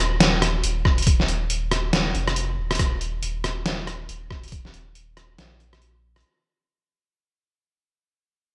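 A deep, round sub bass opens this short, heavy and dark deep dubstep clip, its soft tone mixing triangle and square waves with a fast attack and long sustain, sitting low in the mix. At 0.2 seconds a sampler-style trip hop kit arrives up front, its hi-hat, rim click and medium-tuned snare pitched down, compressed and gritty, with a tape-warm character, a small-room re-recording and gated reverb on its tail. An electronic kick drum joins at 0.9 seconds with a thumpy, similarly pitched-down and grainy sampler sound, and drops out again at 4.6 seconds. The groove moves in a swung, half-time 4/4 feel, and the whole passage fades out across its length. Light reverb and bright 1980s-style digital production frame the mix, giving it a cut-from-a-longer-piece feel.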